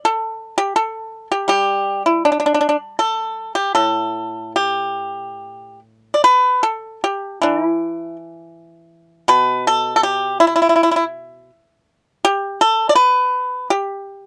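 Chinese traditional music in a pastoral, serene mood, this short excerpt in G gong mode moves at a loose, rubato 69-82 BPM in 4/4 as a solo acoustic pipa, played with fingerpicks and sounding bright, percussive and up front, ranges from A2 to D5 and moves into a second passage at 6.2 seconds, all captured in a dry, close 1970s-style studio recording.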